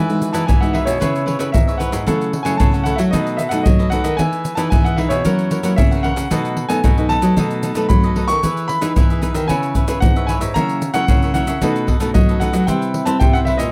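A dry, close 1970s-style studio sound with light reverb frames this festive, joyful samba and choro excerpt in E major, moving at 113 BPM in a straight 4/4. A baby grand piano with natural, long sustain carries the melody over crisp picked cavaquinho and a full-bodied fingerpicked nylon-string guitar with audible finger squeak, while a second, thumb-plucked classical nylon-string guitar sits in the background playing the bass line. From 0.1 s, the egg shaker, pandeiro and deep surdo sit up front, and the harmony moves through major-seventh and dominant chords before landing on an unexpected Cmaj7 at 12.7 s.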